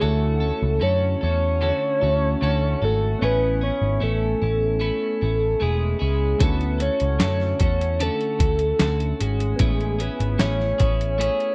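Indie pop with a bedroom pop haze, this dreamy fragment moves at a relaxed 75 BPM in straight 4/4, alternating between Dmaj7 and Amaj7. A soft, octave-layered synth lead carries the melody between G#4 and C#5, its round, sustained tone darkened by a sub octave and colored with phaser, analog chorus and slapback echo. Beneath it, a clean electric guitar, picked and compressed, adds accompaniment through analog chorus and a vibrato effect, while mellow electric-piano-like synth keys with a gentle decay sit in the background under chorus and phaser. A vintage muted picked bass, dark and punchy, sits up front from the start. At 6.4 s a lo-fi sampler-style drum kit arrives, pitched down, muffled and overdriven, with a thumpy kick, a medium-tuned snare and hi-hat. The sound is dry and close, like a 1970s-style studio recording.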